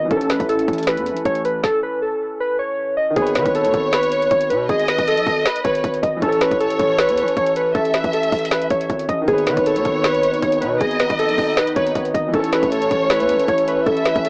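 Heard as a home cassette recording through a small speaker, with light reverb, this brooding, eerie trap fragment moves in a half-time hip hop feel. Up front, warbling lo-fi synth keys carry the melody, their detuned, wave-folded tone softened by chorus into something nostalgic and airy, while a grand piano with long sustain plays accompaniment in the background. A trap drum kit sets a hard-clipped kick against a woody snare and metallic hats, and a distorted 808-style bass adds a heavy, saturated low end. An evolving, detuned pad with chorus holds sustained chords at the start, drops out at 1.6 seconds and returns at 9.3 seconds. From 3.2 seconds a lush symphonic violin section joins up front as a warm second line, bowed with vibrato and a smooth top, over chords alternating between A and G# minor.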